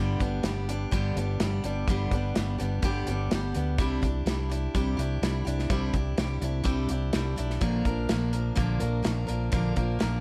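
A light reverb and small-room ambience frame this hopeful, open-road folk rock and heartland rock excerpt in a straight 4/4 feel. A bright, full-bodied picked steel-string acoustic guitar sits up front alongside a dark, round fingered electric bass with a punchy, amped tone, moving from G to Cadd9 at 3.8 seconds and on to Bb at 7.6 seconds. A natural country drum kit with a punchy kick, medium-tuned snare and hi-hat enters at 0.2 seconds and drives the groove through to the end.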